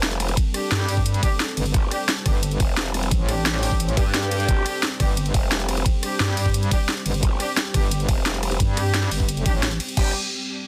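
Mechanical and dark, this dark technical drum and bass cut from a longer piece drives at 175 BPM in straight 4/4, tuned to A4 = 439 Hz, and sits squarely in a drop built on a G5 chord. An overdriven, up-front electronic kit delivers a cracking snare, bright hats, crash, ride and rim clicks, joined at 0.4 s by a knocking, layered kick, both re-recorded in a small room. The growl bass snarls from the opening with a formant-filtered, saturated edge, overdrive, chorus and sidechain pumping, while a metallic FM wobble bass with chorus enters at 0.7 s, both pushed to the front. Underneath, a deep, moody pad of detuned sawtooth unison with a sub octave holds sustained chords in the background, its slow attack and long release bathed in chorus, its own reverb and sidechain pumping. A mellow, distant brass section adds classical-style stabs with light vibrato and dub echo, all within a dry, dense, heavily limited modern master.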